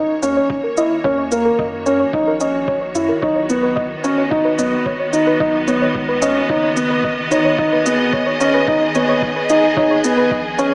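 At 110 BPM in a straight 4/4, a muffled, thumpy electronic kick and a produced shaker set a steady pulse under this moving, hypnotic piano and strings electronica, cut from a longer piece. A dark, woody upright piano sits up front with a slightly detuned, boxy riff, its notes trailing into tape echo. Around it, a soft pluck plays gentle arpeggios through chorus and tape echo. A lush, bowed string section holds sustained chords from a distance, fading in across the full 10.7 seconds, while a deep, round analog bass stays in the background. The strings, pluck and bass all breathe with sidechain pumping as the harmony moves from D#m7 to B at 3.2 seconds and G#m at 7.6 seconds, all within a moderate scoring stage reverb and a small speaker sound.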